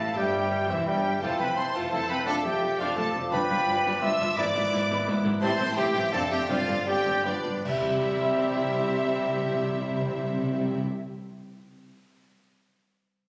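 Captured on a phone in a recital hall, the sound carries a moderate bloom of room reverb with added studio reverb and compression. This is a cheerful, lively fast romantic movement for symphony orchestra in 3/4 and C major, taken at 146-173 BPM with a rubato feel and cut from a longer piece. A rich, smooth symphonic violin section with vibrato carries the melody. A close-miked, airy silver flute, a distant, roomy oboe and a focused, lush studio violin section trace second lines beneath it. A mellow bassoon and a distant, smooth viola section fill the accompaniment, French horns hold sustained chords with light vibrato, and a dark, tight trumpet section adds stabs. Warm cellos and expressive double basses anchor the bass, while round, soft-mallet timpani enter at 3.3 seconds. The harmony moves from Em through G7 as the tempo slows from 4.9 seconds, and at 7.7 seconds an ensemble accent lands on C with bright clash cymbals and bass drum.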